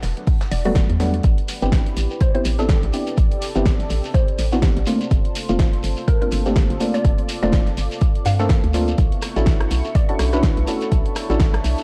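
Moody and hypnotic, this deep house excerpt moves at 124 BPM with a swung 16th feel, a tape-warm, up-front electronic kick anchoring a hollow, bouncy FM bass with tube saturation and sidechain pumping, while a layered deep house kit with a fat snare and rim click mixes with a very quiet gated 80s kit and a grainy shekere. Deep, mellow chord stabs with chorus and analog delay and a smooth, detuned analog pad with 12-bit sampler grit carry the Em11, Am11, Gm11 and Bm11 changes over a dark, very quiet ambient pad. A woody, round mallet-like pluck threads a melody through phaser, analog chorus and tape echo from 0.5 to 10.5 seconds, all in a dry, cassette-tinged mix.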